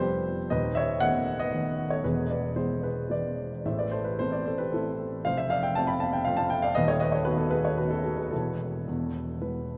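Bathed in the long, wet reverb of a vast cathedral, this brooding and bittersweet fragment of a longer classical piece features a dark, mellow baby grand piano played solo in a rubato three-four time, sitting up front and intimate with its action noise audible and notes that decay quickly, moving through chords such as Fsus2, E, Am and F before a brief fill at 9.1 seconds.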